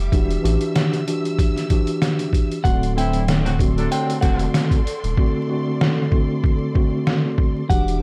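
A dry, gritty recording with vinyl crackle frames this dark boom-bap hip-hop cut at 95 BPM, where a compressed, pitched-down sampler drum kit with a thumpy kick sits up front beside a deep, saturated sub bass and a mellow tine electric piano with a cassette-tape tint over Em9 moving to D7, while a bowed studio string section holds sustained chords underneath, a dark semi-hollow electric guitar melody enters at 2.6 seconds, a distant horn section adds stabs with analog delay from 3.0 to 4.5 seconds, and the hi-hats drop out at 5.2 seconds.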